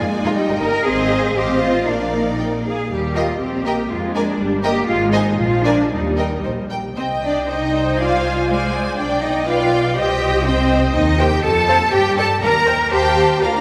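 In a rubato 2/4 at 121 BPM, this graceful, lively excerpt from a quick classical-period string orchestra movement sets a close, expressive first violin section on the melody over a lush, focused second violin line, softly attacked violas sliding with portamento, an up-front, even cello section and clear double basses, all bowed with vibrato in a wet concert hall, turning from Eb major to C minor at 7.0 seconds.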